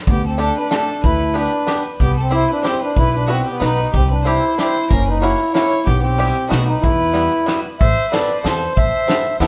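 Bittersweet and nostalgic, this musette waltz in E minor moves at a brisk 186 BPM in 3/4 with a lightly swung eighth-note feel. A mellow, reedy accordion carries the melody, close and up front with a round, dry body, while a single violin floats a soft-attacked, pure second line, bowed sul tasto and touched with tape echo. An upright bass plucks woody, thumpy notes on gut strings, and a vintage brush drum kit of hi-hat, kick and snare sits back in a small, roomy space with a punchy kick and a rolled-off top. A twangy bluegrass banjo, played with fingerpicks, joins at 0.4 seconds with percussive accompaniment. The harmony drifts through suspended and added-ninth colors toward an E minor resolution before a new section opens on A minor add9 at 7.8 seconds, all under a light reverb in this brief cut from a longer piece.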